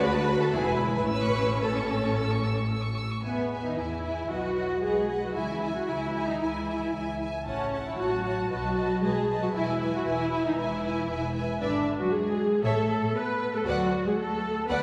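A lively, graceful classical-period string orchestra movement opens with every section together at 115 BPM with a rubato feel in A major: a softly attacked, expressive violin section sings the high melody over a focused second violin line, an up-front, smooth viola accompaniment, a warm, close cello section and a rich bowed double bass section, all with vibrato, before the music moves to E major at 3.2 s and returns to A major at 11.6 s, heard from further back in a concert hall's wet reverb.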